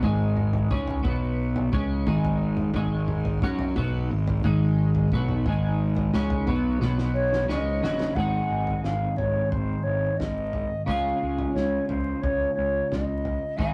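A bright, twangy twelve-string electric guitar riff played through a rotary speaker leads this hazy, trippy psychedelic rock excerpt, backed by a growly fuzz bass, a thuddy cloth-damped drum kit with a fat snare that plays a fill at 6.8 seconds, and a very quiet, lush string machine holding sustained chords until 8.2 seconds, while an airy silver concert flute carries the melody from 7.1 seconds, the whole captured in a rough rehearsal-room recording with tube saturation and vinyl crackle.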